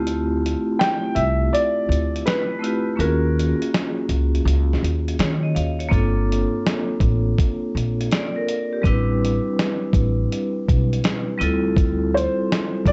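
A swung 82 BPM lo-fi hip hop groove in 4/4 rides on a gritty, sampler-style drum kit with a thumpy kick and fat snare, alongside a woody, pizzicato upright bass in this hazy, melancholic cut from a longer piece in G dorian. A dark, ringing vibraphone struck with hard mallets and carrying motor vibrato comps through Dm11, Ebm11, Gm11 and Am11 under cassette-tape haze and a low-pass filter, while a soft, felt-muted upright piano plays an intimate melody from 0.8 to 3.7 seconds and returns at 12.1 seconds. Light reverb and a tape-dulled top end give the whole a dusty, faded sheen.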